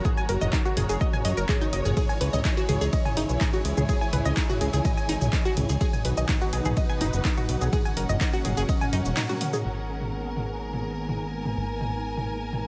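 A dramatic, hypnotic melodic techno excerpt at 125 BPM in G# minor opens on a thick, warbling sawtooth pad with chorus and vintage 12-bit grit, an overdriven analog drum machine of handclaps, hi-hat, ride, shaker and filtered toms, and distant, expressive bowed strings, joined at once by a detuned pluck arpeggio through tape echo, a punchy overdriven kick up front and a funky sawtooth bass, with the pad, strings, pluck and bass pumping to the sidechain in light reverb, until the kick drops out for a drum fill at 9.2 seconds and a filter sweep on the drums runs through a G#madd9 close where a very quiet, evolving drone enters at 11.0 seconds.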